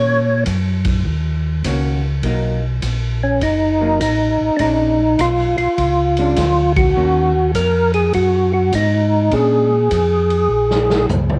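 A fat, percussive tonewheel organ carries the melody up front through a slow rotary speaker and chorus vibrato, with a cassette-tape tint, in this late-night, bluesy soul jazz organ trio swinging in 4/4. A second, round and dark organ holds the bass, a clean, picked hollow-body electric guitar adds accompaniment until 9.7 s, and a distant, roomy drum kit with a punchy kick and ride cymbal joins at 0.5 s. The band hits an accent at 6.7 s and a drum fill closes the clip, all over Ebm7, Bmaj7 and Bb7#9 changes in a small room with light reverb.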